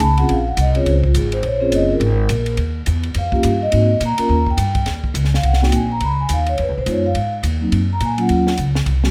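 Warm and swinging, this short cut from a longer small-group swing and bop jazz piece moves at 210 BPM in 4/4, with mellow, ringing vibraphone played with soft mallets and the motor off comping up front over Bbm7, Ebadd9, Ab9 and Db9 changes, a woody, thumpy pizzicato upright bass on gut strings sitting equally forward, and a dry compact cocktail drum kit with dark cymbals, a high-tuned snare and punchy kick tucked further back, all in light reverb.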